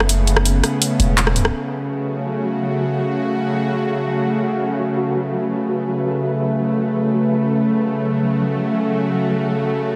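Half-time drum and bass in free time, this tense, cinematic excerpt cut from a longer piece sits in F# minor and opens on a drop over an F# minor chord. For the first 1.5 seconds an electronic, layered drum kit of handclaps, hi-hat and rim click hits up front, overdriven, with bright, low-pass filtered hats, a filtered snare and studio reverb, while a deep, sine-based 808-style bass with a fast attack and mellow decay sustains low underneath. Both stop at 1.5 seconds, leaving a string-like, nasal sawtooth drone that holds sustained chords throughout, up front and bright, its slow attack, vibrato, noise layer and long release giving it an evolving, bowed quality in its own built-in reverb. From 2.1 seconds a pulsing, tempo-synced gated texture of detuned triangle tones enters in the background, bright and treated with chorus and its own reverb. The whole is bathed in a wet echo-chamber reverb and finished with a dense, heavily limited modern master.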